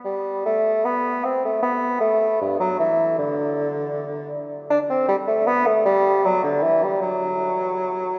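Moving in a supple triple metre with rubato, this baroque-style fantasia for unaccompanied bassoon unfolds in a flowing, serene manner. The solo bassoon enters at 0.1 s and sings alone until 8.2 s, ranging from G2 up to D4 with a mellow tone touched by light vibrato. Though it sits up front, the instrument is wrapped in a roomy, cathedral-like reverb with a long 5.6-second decay, lending its lines a distant, hallowed glow. The playing is in a classical style, and the tuning rests at A4 = 439 Hz. Cut from a longer piece, this brief fragment captures a single continuous passage in a church or concert-hall setting.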